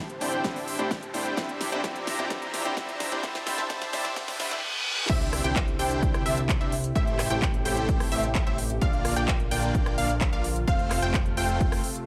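Festival progressive house at 129 BPM in C mixolydian, anthemic and triumphant, this cut from a longer piece opens with a build-up where a filter sweep runs over a drum fill, a warbling chorused pad in the background, a fat detuned analog bass, a huge compressed supersaw riff, and a boxy fingerpicked swing-style acoustic guitar with 12-bit sampler grit and tape echo that plays only until 4.5 seconds. A reverse cymbal leads into the drop at 5.1 seconds, where an impact lands and a lush, wave-folded unison pluck adds tape-echoed arpeggios. Throughout, a punchy overdriven electronic kick drives a pop kit of fat snare, crisp hats, handclaps, rim clicks and crash over chords moving through Am7, Bb, F and Cadd9, with sidechain pumping on the synths, bass and guitar.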